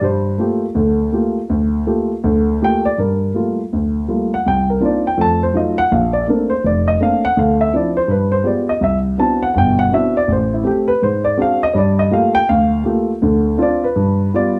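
A moderate reverb from a large studio surrounds this short passage, and lossy compression artefacts colour the sound. It is solo jazz in G minor with a swinging, cool mood, moving at 164 BPM in 4/4 with a swung eighth-note feel that stretches into rubato, and the instrument is tuned a little low, to A4 = 438 Hz. A dark baby grand piano carries the whole piece alone from 0.0 to 14.6 seconds, sitting up front with a mellow, intimate and vintage character, its action noise clearly audible. The harmony is rich with extended chords, opening on Gm9 and passing through Cm11, F7b9, Bbmaj9 and Cmaj9#11 before returning to Gm9 and closing on a Dm7 to G7 turn. Cut from a longer performance, the passage plays one short phrase and then a longer second phrase built on the same material.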